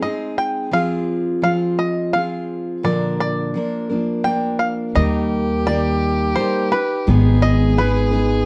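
Acoustic folk in 3/4 meter, this short pastoral fragment, cut from a longer piece, carries a gentle, homespun calm. A bright, twangy bluegrass banjo, played with fingerpicks, carries the melody up front, while a full-bodied, picked dreadnought steel-string guitar supplies the accompaniment from the first moment. At 5.0 seconds a focused, boxy fiddle with light vibrato adds a bowed second line, and an upright bass enters alongside it, its pizzicato gut strings giving a woody, thumpy, dark footing. The harmony moves through Ab, Fm and Bb before settling on Eb and turning to Abm near the close. A moderate studio reverb surrounds the players, and the sound has the worn character of old cassette tape, with a warbly pitch drift.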